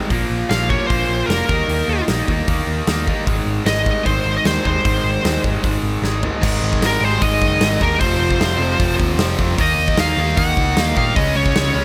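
A dry punk rock excerpt with an urgent, angry mood, where a compressed distorted electric guitar and an overdriven garage guitar in the background pound out riffs over a growly picked bass and an up-front rock drum kit with bright cymbals and a punchy kick, while a high-gain lead guitar with digital delay carries the melody on top, and after a drum fill a double-tracked heavy high-gain guitar joins the riffing at 6.4 s.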